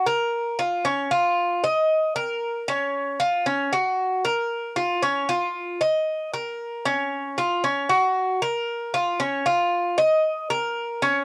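Latin music at 115 BPM in a straight 4/4, this sultry 11.2-second excerpt features a solo Cuban tres, tuned to A4 = 442 Hz, playing between Db4 and Eb5. The acoustic, picked instrument sits up front with a metallic shimmer from its double strings, some of them doubled at the octave. A cassette-tape coloring and a moderate booth ambience give the home recording a warm character.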